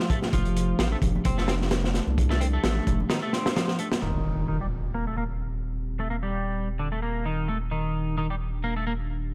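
A crunchy breakbeat kit drives this energetic, funky breaks excerpt at 130 BPM in 4/4, swinging its sixteenths, with a punchy kick, a medium-tuned snare and hi-hat sounding dark and rolled-off up front before a break at 3.1 seconds. Ringing, hard-hand congas sit in the background with a compressed, saturated edge, and both they and the kit stop at 4.0 seconds. A deep, thick sine sub bass with a fast attack holds the low end up front from 0.3 seconds onward, while a clean, picked twelve-string electric guitar plays a riff through overdrive, analog chorus, a low-pass filter and digital delay. Behind them a warbling, nostalgic, lo-fi pad of detuned sawtooth and triangle tones sustains mellow chords with a slow attack, chorus, reverb and sidechain pumping, moving from Fadd9 to Eb6. At 4.0 seconds an electronic impact hits as the second section opens, and a filter sweep on the guitar colours the remainder inside a small room ambience.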